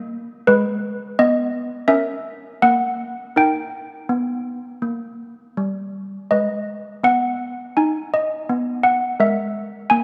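Wintry and solemn, this brief classical handbell tune in G# minor moves at a steady 83 BPM in 4/4 as a single set of malleted handbells, bell-like and airy with damped, short strokes from medium clappers, rings up front through a moderate concert hall reverb, passing from G#m through D# and back before this excerpt of a longer piece closes on a rootless Gm6 at 9.2 seconds.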